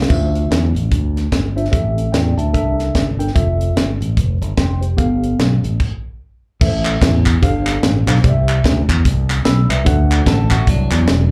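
A bright, up-front fingered electric bass drives this jubilant, uplifting uptempo gospel cut in C major, swinging its eighths at 148 BPM in 4/4. Beside it sits a tight funk drum kit with a high-tuned snare, tight kick and dark crash, splash and hi-hat cymbals, while a mellow tine electric piano with slapback echo fills in chords such as Dm9, C13, Fmaj7 and G9. The whole band drops out for a brief stop at 5.8 seconds, then returns into a new section moving through Am, G9sus4, C and D7. Crisp, band-limited group handclaps with a vintage character and their own slapback echo join at 6.8 seconds. A clean, compressed picked electric guitar with a warbly pitch drift slips in at 10.3 seconds just as this excerpt from a longer piece cuts off. It sounds like a live gig heard through the venue's PA, carrying a light club reverb.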